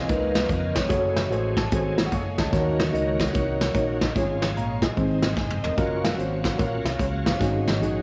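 A mellow tine electric piano accompanies this soulful, jubilant uptempo gospel excerpt at 147 BPM with a swung feel, adding a fill at 1.3 seconds over a round, punchy fingered bass, a soft brush drum kit up front that plays a fill at 5.4 seconds, a shouting, lightly overdriven tonewheel organ with slow rotary speaker and chorus vibrato in the background, and a very quiet French horn section holding soft-attack chords with light vibrato, all wrapped in echo-chamber reverb and the warbling pitch drift of worn cassette tape.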